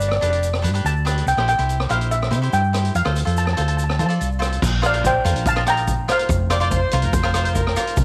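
Carefree and bouncy, this straight 143 BPM calypso excerpt in Bb major sets a shimmering steel pan melody, played with hard rubber sticks, over crisp picked cavaquinho, a round, up-front hollow-body electric bass, a small-room street-band drum kit with boomy kick and dark cymbals, and a grainy egg shaker in the background, before a punchy horn section with light vibrato slips in at 6.5 seconds, all in light studio reverb.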